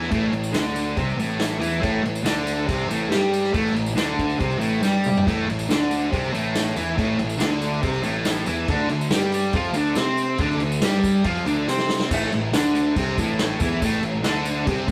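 A straight 4/4 beat at 140 BPM drives this raw, gritty garage rock clip in A minor, with a vintage acoustic drum kit (punchy kick, medium-tuned snare, dark cymbals, toms) adding fills around 4.8 s and 11.7 s and a jingly tambourine sitting close and dry in the background. Up front, a thick, bright, double-tracked fuzz guitar hammers out the riff over a punchy overdriven fuzz bass, moving from Am to D7sus4 at 8.7 s before returning to Am at 12.1 s. A moderate stone-room reverb gives the whole clip the rough feel of a rehearsal-room take cut from a longer piece.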